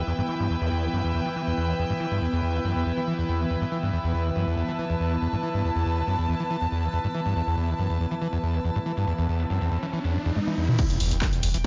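A driving, straight 4/4 pulse at 140 BPM anchors this dark, industrial peak-time techno fragment in E minor, cut from a longer piece and tuned to A4 = 444 Hz. From the opening, a screaming acid line in the low register grinds out a squelchy, resonant sawtooth riff with distortion, chorus and sidechain pumping, while a swarming, detuned drone of ring-modulated sine and sawtooth tones hovers just above it in its own reverb, and a soft-edged, sul tasto string section floats high and distant yet up front. An overdriven techno kit of crash, ride, hi-hat, shaker, handclaps and toms pumps under low-pass filtering, and a riser climbs from 8.8 s toward a drum fill before the drone falls away at 10.4 s. At 10.8 s an impact lands alongside a heavy, layered electronic kick and a very quiet acoustic studio kit with snare and tambourine, joined a moment later by a thick, saturated sine sub bass on E1. 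The mix sits in a small digital room with a dark top end.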